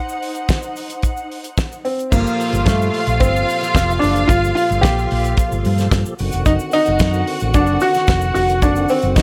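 The baby grand piano carries the melody up front with a present, warm tone, entering at 1.8 seconds over a driving, danceable disco groove in G minor at 111 BPM. A dark string section opens the piece, bowed sul tasto with light vibrato and a soft attack, close and intimate as a second line, while a grainy, bright egg shaker sits in the background and a damped 70s drum kit arrives almost at once with a fat snare, tight kick and dark cymbals, dry and up front. At 2.1 seconds a tonewheel organ joins with full sustained chords, lightly overdriven with chorus vibrato, key click and a slow rotary speaker, alongside a round, amped hollow-body electric bass played with the fingers. The harmony moves from a Cdim opening to Gm9 and then D7b9 at 6.2 seconds. A light studio reverb frames this excerpt cut from a longer piece.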